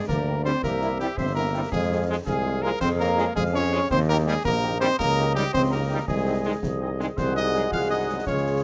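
A straight 6/8 pulse of dotted-quarter beats drives this festive, proud military-style march for wind band, a short cut from a longer piece. A mellow solo cornet carries the melody up front with light vibrato in a classical style, beside a clear, soft-attacked tuba anchoring the bass, both present from the first moments. Behind them, an airy large flute ensemble sits very quiet high above, while a smooth-topped euphonium and a soft woodwind section add second lines in the background. A French horn section fills in accompaniment from 0.3 seconds, and a bright trombone section holds sustained chords from 0.4 seconds, as concert snare drum, concert bass drum and dark clash cymbals mark the march from a small acoustic room. The harmony moves from G minor through C7 and F minor toward A-flat chords, and the whole band sits in a moderate booth ambience with a short, tight decay.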